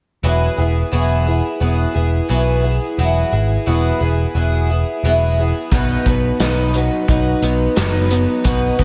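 A straight 4/4 pulse at 88 BPM carries this nostalgic, hopeful folk rock and heartland rock excerpt in E major, opening on a shimmering, octave-doubled twelve-string acoustic guitar with finger squeak, subtle chorus and slapback echo, above a punchy, amped electric bass, both up front over an Eadd9 chord. At 5.7 s the harmony moves to B as a dark, slightly broken-up electric guitar riff with its own slapback echo enters alongside an acoustic drum kit of hi-hat, punchy kick and medium-tuned snare played with bundle sticks. A moderate, lush hall reverb gives the whole mix a big arena sound with a soft, rolled-off top.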